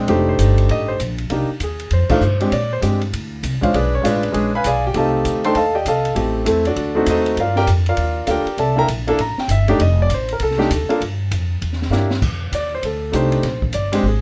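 A brisk, swinging 4/4 carries this playful, relaxed jazz piano trio fragment, with the whole band hitting an accent at 2.1 seconds over chords rich in thirteenths and a flashy D7b9. An up-front concert grand with an intimate, polished tone and audible action noise leads the melody, backed by woody pizzicato upright bass and a dark-sounding drum kit with a high-tuned snare and boomy kick. Light reverb adds a touch of space, and a short drum fill at 11.9 seconds tips the music into a brief grand piano solo.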